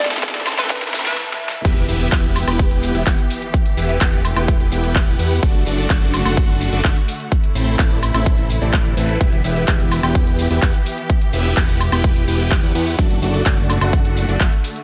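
Festival progressive house in E minor at 127 BPM, this emotional, powerful excerpt opens on a brief build-up where a hollow, bouncy square pluck with chorus, 12-bit sampler grit and dub echo sounds over detuned supersaw chords, background studio strings, a very quiet riser and a big-room drum kit with a huge overdriven snare, crash, claps, hi-hat and woodblock. At 1.6 seconds the drop lands with an impact as a fat, saturated analog bass joins the punchy, up-front overdriven kick, while the lush, bright supersaw riff, colored by phaser, cassette tape and dub echo, pumps with the sidechain alongside the bass and the smooth, vibrato-laden strings. The chords move from Am through Em and D/F#, all under a light reverb.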